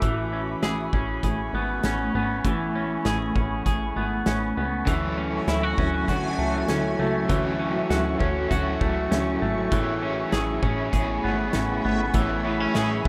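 A rough home-demo mix with a modest small-room reverb carries this blissful, floating dream pop fragment in A major at 99 BPM, moving from Amaj9 to Dmaj9 and back. An ethereal, airy detuned pad holds sustained chords while a twangy, slightly broken-up electric guitar plays fingered arpeggios up front with subtle chorus and digital delay, over a punchy, plucky analog bass and a loose acoustic indie kit with a punchy kick and a pumping room sound. At 4.9 seconds a warm, overdriven picked guitar joins with tremolo and chorus, and a bright reversed granular texture drifts in the background at 5.4 and 11.3 seconds.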